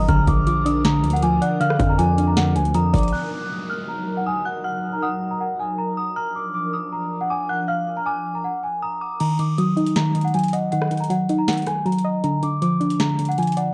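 Hip hop trap at 158 BPM in a half-time feel and Eb harmonic minor, eerie and menacing, where an up-front, ringing celesta carries the melody over a detuned, inharmonic FM synth bell, a soft round pluck, a breathy pad and a saturated 808-style bass that drops out at 3.1 s, while a booming analog drum machine with crisp snare and metallic hats falls away as a downlifter and filter sweep take over, then returns at 9.2 s with its kick muted, all captured as a dry home recording on cassette.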